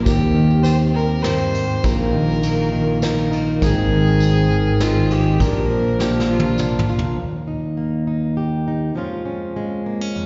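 Nostalgic and hopeful, this short excerpt of acoustic folk in 3/4 unfolds as a live gig heard through the venue's PA, with recital hall reverb and a softened top end. A full-bodied, up-front fingerpicked steel-string guitar with audible finger squeak carries the accompaniment, joined by a growly fretless electric bass, a reedy, breathing pedal harmonium, a distant, woody fiddle with light vibrato and slapback echo, soft brush drums with a tight kick, and a jingly tambourine in the background. The fiddle drops out at 6.8 seconds, and the other parts fall away around a drum fill that ends at 7.2 seconds, leaving the guitar alone until 10.3 seconds.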